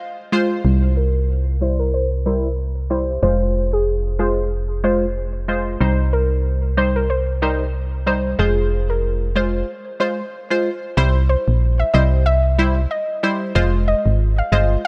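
A solid FM bass sits up front from 0.6 seconds, punchy and dark with a fast, decaying attack, anchoring this bouncy, sultry dancehall groove at 93 BPM in 4/4 with a light swing on the sixteenths. A bright, sawtooth-and-square chord stab with chorus plays throughout, its filter sweep running across the first section, while a soft, round pluck melody carries chorus, low-pass filtering and tape echo over chords moving between Fm, C and Cm. A break at 9.7 seconds leads into a new section at 11.0 seconds, all set in light reverb in this cut from a longer piece.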